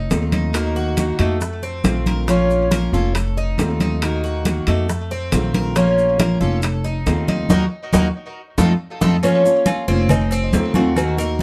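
A Cuban tres and an upright bass open this short, sultry cut of Cuban son and guajira at 138 BPM in 4/4 with a straight feel. The tres spins bright, metallic arpeggios on its doubled strings, some octave-doubled, with a touch of tape echo. The pizzicato bass sits up front with a woody, growly, thumpy tone. A fingerpicked dreadnought steel-string guitar, full-bodied and up front in the mix, joins as accompaniment over a warm vamp that cycles through F7, Ebm and Bbm. Behind them, damped congas, tight high-tuned bongos with cowbell, and grainy maracas fill out the percussion, while ringing metal-shell timbales with agogo bells add their own color. A band accent arrives at 7.5 seconds, a drum fill follows, and a new section begins at 9.2 seconds, all within light reverb.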